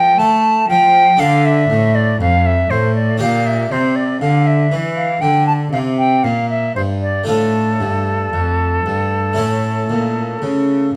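Solemn and introspective, this 11-second passage from a baroque-style classical sonata movement with continuo moves at a slow 59 BPM in straight 4/4, in D minor. A silver concert flute carries the melody between A4 and A5 with a pure, metallic tone, tongued notes and vibrato, sitting at the front of the balance. Beneath it, a single bowed cello plays a smooth, even bass line from F2 to A3, its rich voice also shaded with vibrato. A French-style harpsichord with three sets of strings fills in the accompaniment from F2 to A4, its plucked sound close-miked, dry and brilliant. The harmony moves from D minor to G minor over B flat at 3.2 seconds, returns to D minor at 7.3 seconds, and reaches A at 9.4 seconds, all within a light reverb.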